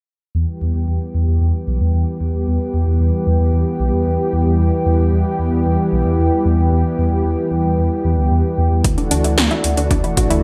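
Synthwave with a moody, nocturnal feel, this excerpt opens on a lush, chorused unison pad holding sustained chords over a rumbling, detuned saw bass, both pumping with sidechain and shaped by a filter sweep as an E minor chord holds. At 8.8 seconds the harmony moves to Dadd9 and the drums arrive: a punchy electronic kick, a gated snare and metallic hi-hats with a tape-like character, given the air of a large room. At 9.0 seconds a round analog pluck joins with arpeggios through chorus and digital delay, all set in bright, lightly reverberant 1980s-style digital production.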